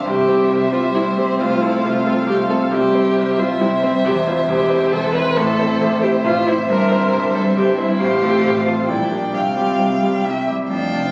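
Heard as if on a phone held in the room, this lively, spirited piano quintet movement from the classical period carries the wet bloom of a recital hall with a touch of club reverb. A bright, brilliant grand piano sits up front with natural accompaniment from 0.0 s, while a rich, distant violin carries the melody in a high register. A second, darker violin plays its own second line, a warm viola adds accompaniment from a distance, and a close cello with a soft attack plays a second line in the background. Each string part is a single bowed player with vibrato, portamento and expressive phrasing, giving the strings a singing, gliding quality against the piano's bright sparkle. The triple-metre passage moves from C through F/C, Am and C7/G to a Csus4 that settles back on C at 10.2 s, sounding like a spirited fragment cut from a longer movement.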